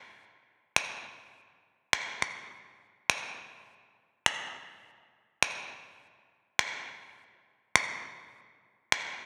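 Energetic yet bittersweet, this short pop fragment is cut from a longer piece and carries a bright, 1980s-style digital sheen. Its only part is a set of electronic finger snaps, which enter at 0.8 seconds and sound until 9.1 seconds. The snaps are layered and produced, sitting up front in the mix with a gated reverb that gives each hit a clipped tail. Around them, a lush hall reverb lends the recording a wet, spacious glow. Set in straight 4/4, the passage works as a single section, letting the glossy snaps carry the whole moment on their own.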